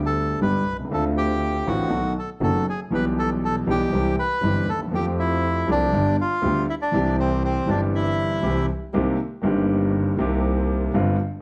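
This tango fragment opens with a warm concert grand piano and a bowed double bass sounding together, joined a moment later by a bandoneon carrying the melody. The feel is elegant and playful, with a loose, rubato pulse that lets the phrases breathe. The piano sits up front and intimate, with deep bass, a vintage character and audible action noise beneath its smooth accompaniment. The double bass is clear and even, played by a single bowed player with vibrato, while the reedy, dark bandoneon sits mid-forward and close in the mix. Harmonies move through chords such as Dm7, B7, Em/B and Fadd9 before settling on C. The bandoneon drops out at 8.7 seconds, leaving piano and bass to turn toward a Cm7 in a new section, all set in a moderate large-studio reverb.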